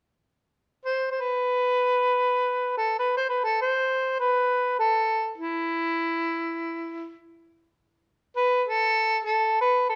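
In free, unmetered time, this fragment of Japanese traditional chamber music unfolds as a solitary, meditative solo for mellow harmonica, which enters at 0.9 seconds and carries the line alone until the end. Played up front with a vintage, jazz-inflected character, its tones carry a light vibrato and scooped notes that lend each phrase a gentle, searching quality. A moderate recital-hall reverb surrounds the harmonica with a soft sense of space.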